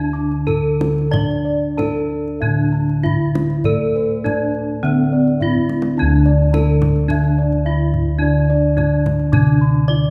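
A straight 4/4 pulse moving between 91 and 107 BPM drives this ceremonial, shimmering fragment of Javanese gamelan, cut from a longer piece. A horn-mallet bronze metallophone carries the melody up front, its paired tuning producing shimmering beats, over a mellow, softly padded metallophone accompaniment, round, beating bossed gongs in arpeggios, and a brighter set of bossed gongs anchoring the bass. A tight, dry kendang played with soft hands enters at 0.3 seconds and fills from 5.6 to 6.0 seconds into the second section, all within the wet ring of a recital hall.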